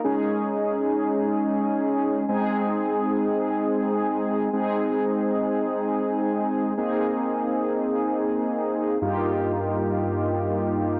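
Pop in free time and A-flat major, this wistful yet bright fragment from a longer piece features a lone mellow synth brass, round, detuned and sawtooth-edged with a filter sweep, fast attack and chorus, sustaining chords from Dbsus2 through Ab and Abadd9 to Ebadd9/G between G2 and Ab4 for all 11.0 seconds, set up front in a lush hall reverb with the gritty grain of transformer saturation.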